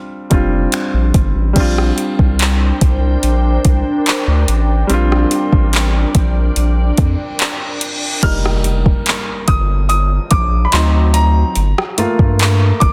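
Sensual and late-night, this contemporary R&B passage moves at an unhurried 72 BPM in a straight 4/4, cut from a longer piece. A clear, polished baby grand piano opens alone before a round, deep analog bass with a dark, fast-attack tone and a smooth electronic drum kit arrive at 0.3 seconds, the kit's soft kick, metallic hats, finger snaps, handclaps and rim clicks sitting up front with a gently clipped snare and the sound of a large room. Around 2.5 seconds a glassy, ethereal FM pad fades in with slow-blooming sustained chords, shimmering with ensemble chorus and its own reverb, over lush harmony built on Bb69. A reverse cymbal rises into an electronic impact at 8.2 seconds, where the pad drops out and the piano takes a solo as the chords shift through F9sus4 and D7b9 to settle on Gm9. The mix is dry, dense and heavily limited, with a modern finish.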